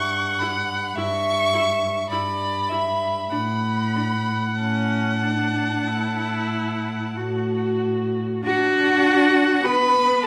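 A rich, up-front cello with a smooth top and vibrato anchors the bass of this serene, rubato slow romantic string quartet movement in D major at 45-54 BPM, beneath a focused, distant first violin singing the melody high above and a closer second violin on an inner line, while the viola enters at 0.4 s with expressive portamento, the harmony moving from Em/G through D/A and A5 to arrive on D at 8.4 s, the quartet set in a reverberant church or concert hall in this short excerpt of a longer piece.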